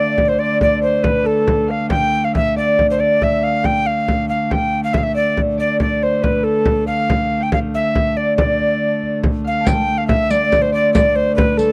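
Close, dry 1970s-style studio sound with a light reverb frames this driving, ancient-feeling medieval dance excerpt in D dorian at 93 BPM in 6/8, where an airy, up-front alto recorder with vibrato, a crisp attack and chiff carries the melody over a fingerpicked, ringing Celtic harp second line in the background, a rich, smooth wheel-bowed hurdy-gurdy drone and a deep, large frame drum, until a band-limited riq with bright jingles joins at 9.7 seconds.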